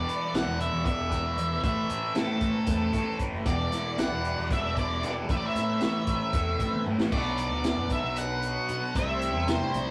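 A bright, double-tracked fuzz guitar riff with a phaser opens this dark, mysterious psychedelic rock excerpt in 7/8, joined at once by a dusky octave-fuzz lead melody, a round overdriven bass and a lush, bowed string section holding sustained chords in the background. A crunchy, saturated breakbeat kit with dim cymbals and a tight kick enters at 0.1 seconds, and a drum fill at 6.7 seconds leads into a new section at 7.1 seconds. The sound is rough and close, like a rehearsal room, with a small, wet reverb around the players.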